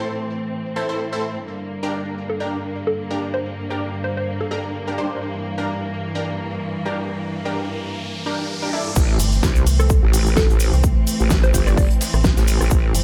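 This gritty, aggressive bass house fragment at 128 BPM in A phrygian opens with a rich studio string section holding smooth, bowed chords, pumping against the sidechain under a low-pass filter. Bold, orchestra-hit-like synth stabs built from detuned sawtooth layers sit up front with phaser, built-in reverb and tape echo, while a hollow, bouncy square-wave pluck adds a short chorused melody from 2.3 seconds. The harmony moves from A minor to G minor, and an electronic riser builds from 6.5 seconds. At the drop at 9.0 seconds the harmony returns to A minor and the low end takes over: a nasal, vowel-sweep wobble bass with overdrive and a dark, metallic FM bass with tube saturation both sit up front, pumping with the sidechain. A punchy layered kick and a big-room kit with a huge snare, crash, hi-hat and rim click drive the section at a 16th-note swing of 56%. Underneath, a very quiet brushed jazz kit with shaker and a grainy cabasa in the background add texture, all set in light small-room ambience.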